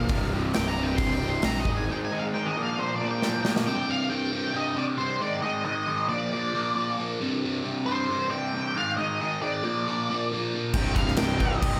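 A straight 4/4 pulse at 136 BPM drives this cathartic, dark quiet-loud alternative rock passage in C minor, with a punchy, up-front acoustic drum kit and a very quiet, smooth bowed string section filling out the opening over Cm, Abadd9 and Bb until a drum fill from 3.2 seconds, while a fuzzed, overdriven picked bass drops out at 1.9 seconds. At 3.7 seconds the kit, strings and a background overdriven guitar, wet with spring reverb and slapback echo, fall away, leaving a bright, crunchy phaser-treated rhythm guitar riffing up front beneath a dark, distorted octave-fuzz lead guitar melody over power chords. The full band and strings return at 10.7 seconds, all set in a moderate scoring-stage reverb for a big arena sound.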